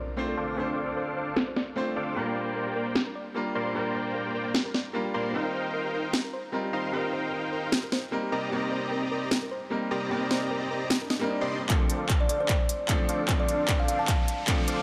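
A swung half-time groove drives this bright, euphoric future bass excerpt: a brilliant concert grand piano and a round, tine-like synth pluck playing arpeggios open with an electronic impact, a huge, detuned supersaw riff with cassette-tape grit joins at 0.4 seconds, and crisp trap hats, handclaps and a sharp snare arrive at 1.4 seconds under filter sweeps on the drums and pluck, while after a swell the build-up beginning at 11.7 seconds brings a punchy layered kick, a drum fill, a riser and a woody kalimba melody, with sidechain pumping and tape echo on the piano, pluck, supersaw and kalimba.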